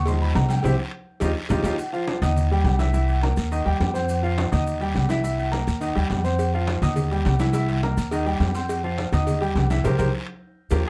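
A woody, dark upright bass sits up front, plucked on steel strings, beside a clear grand piano that takes a solo turn in the opening 1.8 seconds of this fiery, passionate salsa excerpt, cut from a longer piece. Behind them, ringing congas struck with hard hands, raspy close guiro, grainy distant maracas and metal-shelled timbales and agogo bells fill the background, while a round, low-tuned cowbell drops out after its opening moments and returns at 6.4 seconds. Band accents and drum fills punctuate the section endings, and the production is dark with a light reverb.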